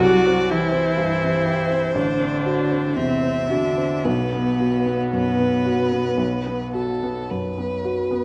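A slow, yearning romantic movement for piano quartet opens with all four players at once. A bowed violin carries the melody with smooth, even vibrato, a distant cello traces a second line beneath it, and an up-front viola and baby grand piano supply the accompaniment. The strings share a rich tone, while the piano sounds intimate and present, its action noise audible, all set in a moderate recital hall reverb with a dark, warm production. The cello and viola fall silent at 7.3 seconds, leaving violin and piano to carry this solemn, freely paced fragment of a longer piece to 8.2 seconds.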